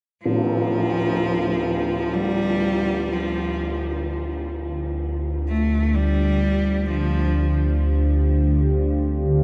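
Unsettling and dark, this short dark ambient drone piece is cut from a longer work and moves in a slow, straight pulse. A lone bowed cello opens at 0.2 s with a bright, biting melody, its vibrato intense and up front, trailed by delay. At 1.6 s a deep, ominous drone rumbles in beneath it, a sawtooth-and-triangle tone that sits close and heavy, colored by a phaser and its own reverb. At 4.3 s a moody pad fades in with sustained chords, its detuned, wave-folded, ring-modulated layers thickened with chorus and a sub octave. A moderate yet huge ambient reverb and the grain of cassette tape wrap the whole recording in a dark haze.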